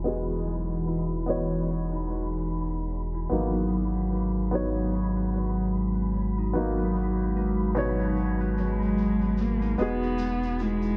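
Smoky and brooding, this swung trip hop excerpt rests on a woody, slightly detuned upright piano with tremolo and tape echo, a murky pad of sustained chords in the background, and bright ringing harp arpeggios trailed by dub echo, all three moving through a filter sweep over a soft, round sub bass. A grainy, flickering texture hovers high in the distance while a tube shaker sits far back in a large room, and the whole mix is wrapped in vinyl crackle and light reverb. At 8.6 s a dark, bowed cello with vibrato steps up front to carry a short echoing melody as the chords return from G#m7 to Emaj7.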